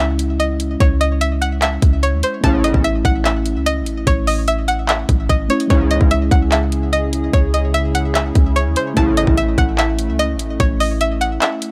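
A twangy, string-like resonator pluck carries the melody from the opening moment, bright and up front with chorus and delay. Beneath it sit muted, felt-like synth keys and a clean, boomy 808-style bass. A trap drum kit arrives a fraction later, with a hard-clipped kick, metallic hi-hats and handclaps. This melancholic yet hard-hitting trap fragment, cut from a longer piece, moves at 147 BPM in a half-time 4/4 feel. It sits in C# minor, tuned to A4 = 437 Hz, and alternates between C#m and A. Short, edgy stabs from a sync-sweep polysynth cut in with each chord change, first at 2.4 seconds, each carrying an evolving, nasal sweep. From 5.7 seconds a hollow, flute-like pad holds dark sustained chords underneath. The mix is dry, with little reverb, and the kick drops out at 11.4 seconds.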